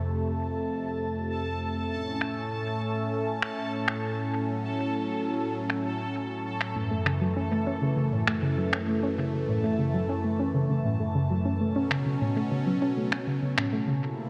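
A soft, round pluck carries the arpeggios in this playful, intricate IDM fragment, entering at 6.8 seconds with a dark, gentle tone that sits up front, thickened by chorus and trailed by tape echo. Beneath it, a phased analog pad holds sustained chords from the opening, its detuned sawtooth body swirling and evolving through phaser and chorus with a slow attack and long release. A bubbling texture of random, resonant filter steps drifts higher up, coloured by chorus and its own built-in reverb. Electronic finger snaps arrive at 2.2 seconds in straight 4/4 at 99 BPM, their hats, snare and toms muffled by low-pass filtering and repeated through tape echo. The harmony moves from F to A, then F#m7 and Bsus2, all set in a lush hall reverb before the cut from the longer piece breaks off at 14.0 seconds.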